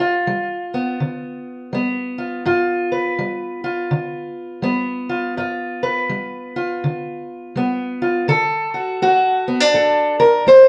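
Swung eighth notes at a relaxed 82 BPM in 4/4 carry this short, soulful, gritty excerpt of acoustic country blues in G mixolydian, tuned slightly sharp to A4 = 443 Hz. A lone fingerpicked steel-string parlour guitar, dark and boxy and placed up front, ranges from G2 to C5, resting on G7 before moving to D at 8.3 seconds. It was captured live in one room with a moderate studio reverb that lends a natural sense of space.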